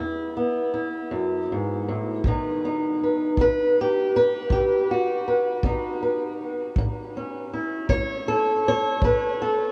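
A fingerpicked, swing-style acoustic guitar sits up front and carries the melody, its dark, woody, boxy tone shaped by old strings and trailed by a diffuse ambient delay. This is a slow acoustic country blues in 12/8 at 53 BPM, with a gritty, swaggering mood and a straight feel, tuned slightly low to A4 = 435 Hz. A kick drum with a punchy, natural sound and brushes, caught in a small room, enters at 2.2 s and plays until 9.2 s, sitting a little beneath the guitar. The harmony moves from E5 to B at 2.2 s and then to A at 6.8 s, while the guitar ranges from E2 up to C#5. A huge ambient reverb with a long tail soaks the mix in a dreamy haze, giving this short cut from a longer piece a cavernous, lingering air.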